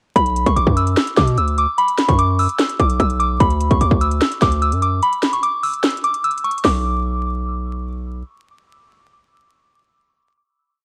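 A soft FM synth bell opens the piece at 0.2 s with a pure, mellow looping melody between B5 and E6, chorused and low-pass filtered and repeated like a sampled loop. A hard-hitting 808-style bass and a trap drum kit enter with it. This is a short, melancholic and menacing trap piece in B minor at 148 BPM with a half-time feel, moving from Bm to Dadd9 over a bouncy beat of metallic sixteenth-note hats, fast hi-hat rolls, a hard-clipped kick and a sharp snare. The 808 delivers punchy, heavy sine sub-bass notes with a noise layer, following the kick with pitch slides and long decaying tails. A break arrives at 5.0 s before the piece settles on a final Bm chord at 6.6 s; the drums stop shortly after, while the bell and bass carry on a little longer. All three parts sit up front, wrapped in digital ambience with the character of a home cassette recording and vinyl crackle.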